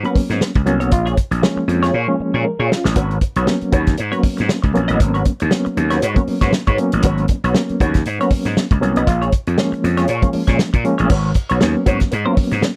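Funk at 118 BPM in G# dorian, this hypnotic, driving excerpt has a light swing on the sixteenths and a dry, close 1970s-style studio sound. An up-front soul drum kit with a tight kick and rolled-off top sits with a gritty, overdriven, growly slap bass beneath reedy electric piano stabs shimmering with fast tremolo, while a clean, compressed electric guitar adds picked accompaniment through wah and vibrato. A raspy, vintage trombone appears for brief second-line notes at 0.9 and 9.1 seconds, each on a band accent as the harmony moves from G#m11 to A#m7, and a drum fill arrives at 1.9 seconds.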